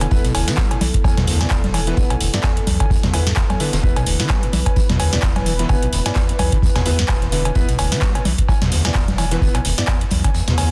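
Driving and trippy, this acid house cut at 129 BPM in E minor pentatonic pairs a squelchy, resonant overdriven acid bass riff with a saturated sine sub bass and a deep, detuned dark analog pad pumping under sidechain, while a booming analog drum machine with congas, cowbell, handclaps, crisp snare and metallic hats rides over a deep electronic kick that drops out at 10.3 seconds, a gritty raw garage kit sits in the background, and boxy grand piano stabs carry 12-bit sampler grit and dub echo in a dense, heavily limited mix with little reverb.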